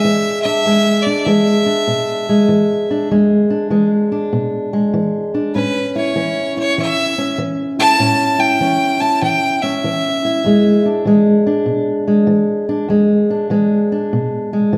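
A clear, bowed fiddle with light vibrato and an intense, smooth top carries the melody up front over a dark, woody fingerpicked steel-string acoustic guitar with old strings in this laid-back, gritty acoustic country blues excerpt at 98 BPM in E mixolydian, swung and moving from E7 to A7 and back, with the fiddle dropping out at 10.8 seconds while the guitar rings on to 14.8 seconds in a reverberant recital hall.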